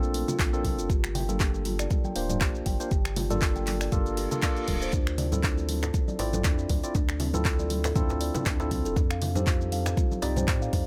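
An afro house excerpt, driving and earthy, opens with bright tine electric piano stabs, a round sine sub bass and a deep house kit of finger snaps, handclaps, hi-hat, shaker and toms, soon joined by woody, ringing kalimba arpeggios, thin-skinned background congas and a deep, layered electronic kick, with the sub bass, electric piano and kalimba all pumping and the latter two carrying digital delay, as a reverse cymbal at 4.1 seconds leads into a close, dry djembe entering at 4.9 seconds, all in a dry mix over Bbmaj7, Gm7, Dm7 and F7.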